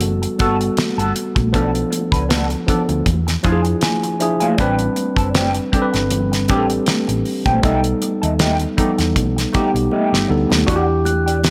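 A light studio reverb surrounds this bittersweet, silky slice of lush 1970s-style soul, with a dry, damped drum kit sitting up front, its fat snare, tight kick and hi-hat carrying a gentle sixteenth-note swing. A mellow tine electric piano, worn and slightly out of tune as if heard through its built-in speakers, carries the accompaniment through rich chords such as Gmaj9, E7b9 and Am11, and slips in a fill at 3.4 seconds. An electric guitar through a small old amp picks a slightly broken-up riff shaped by wah, while a hollow-body short-scale bass, fingered and amped, lays down a dark, round low end. High-tuned congas with a thin skin, played with hard hands, sound distant and very quiet, as if from a large room, and the drums add a fill at 9.9 seconds before the harmony settles on Em9. At 11.1 seconds a glockenspiel struck with rubber mallets rings a soft, bell-like note just as this excerpt from a longer piece ends.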